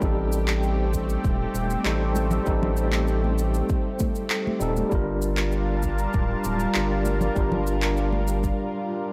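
Relaxed and warm, this short sunset chillout excerpt in G minor moves at 98 BPM in a straight 4/4, drifting from Am7b5 to Gm7 at 4.9 seconds. A worn, slightly out-of-tune tine electric piano with tape echo sits over a lush, detuned unison pad treated with chorus and phaser, while a round, dark analog bass holds the low end up front alongside a deep, layered electronic kick, electronic shaker and handclaps in a small room reverb. Soft-handed congas join in the background at 2.2 seconds, the bass drops out at 8.5 seconds, and the drums follow at 8.6 seconds for a brief break, all captured in a dry, gritty recording with light reverb.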